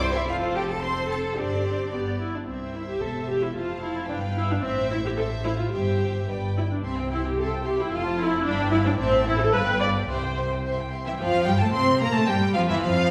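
Set in a quick, straight two-beat metre, this spirited and graceful excerpt from a classical-period movement for string orchestra has the violin section carrying the melody with expressive vibrato and a soft attack, while a second violin line runs smooth and even alongside it. The violas sit up front with a warm accompaniment, and the cellos, heard close, join the rich double basses on the bass line. A recital-hall reverb gives the ensemble a resonant, lingering bloom across the 13.1 seconds.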